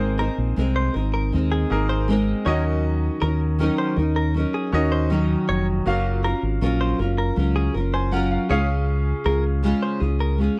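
A fingerpicked nylon-string guitar, double-tracked and up front with a fresh-stringed, classical warmth, opens this short acoustic pop fragment together with a bright concert grand piano and a fingered electric bass. At 0.2 seconds a direct-recorded clean electric guitar joins with picked arpeggios, its compressed, scooped tone treated with a lush chorus. The bass sits forward with a dark, round, punchy sound, while the piano adds a brilliant, polished color with deep lows and short sustain, placed lower in the mix than the guitars. The harmony moves from Abadd9 to Ebm7 at 2.5 seconds and on to Gbmaj7 at 5.9 seconds, in a steady, straight 4/4 that feels sunny and heartfelt. The sound is a dry, close 1970s-style studio recording with light reverb.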